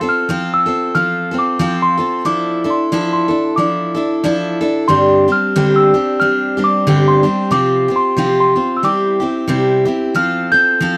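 A dry, close 1970s-style studio sound with light reverb frames this short folk passage, cut from a longer piece. It feels warm and hopeful at 91 BPM in F major, with a gentle swing on the eighth notes. A bright, full-bodied picked steel-string acoustic guitar sits up front as accompaniment, moving from F through Dmadd9/F, Gsus4, Csus4 and C before returning to F at 10.1 seconds, while a delicate, bell-like celesta with soft felt hammers carries a sweet melody high above it.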